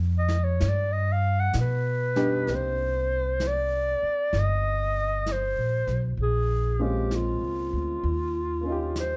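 A smoky, intimate jazz ballad with a swung feel, led by a close-miked clarinet soloing up front with vibrato, subtone and scooped notes over a pizzicato upright bass with a woody, growly tone and a brushed snare and hi-hat. A baby grand piano with a natural, short-sustained sound joins at 2.2 s as the harmony moves from a rootless Dmmaj7 and G into Cm9, Bbm7 and Eb7. Light reverb and a dark, warm production frame this fragment of a longer piece.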